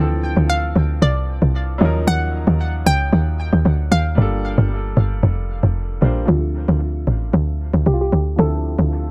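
The tight log drum bass stands out most, punchy and up front with a percussive, noise-flecked FM attack that decays quickly beneath this late-night amapiano cut from a longer piece. Set at 114 BPM in a straight 4/4 and in D minor, the track moves through Dm9, Ebm9 and Gm9 before returning to Dm9 at 6.3 seconds. Above it, a hollow square-wave pluck carries the melody between F4 and G5, its detuned, bouncy tone brightened by chorus and softened by a low-pass filter and dub echo. A clear, slightly worn grand piano supplies accompaniment from E3 to C5, sitting lower in the mix and sharing that filtered, echoing treatment. The opening drop runs until 6.3 seconds, when a filter sweep takes over through to 9.1 seconds, and the echo-heavy studio reverb gives the whole deep, nocturnal mood a spacious glow.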